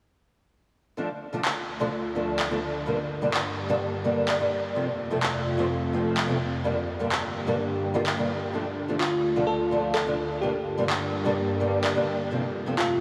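A dreamy, reverb-soaked wash opens this euphoric, anthemic festival progressive house excerpt in G minor at 127 BPM, where a boxy, fingerpicked acoustic archtop guitar with audible finger squeak and a thick, detuned sawtooth unison pad carrying sampler grit sit up front alongside layered, up-front electronic handclaps and a filter sweep, until a sparkling, bell-like FM electric piano melody enters at 9.0 seconds over chords moving through Dm, Gm and F.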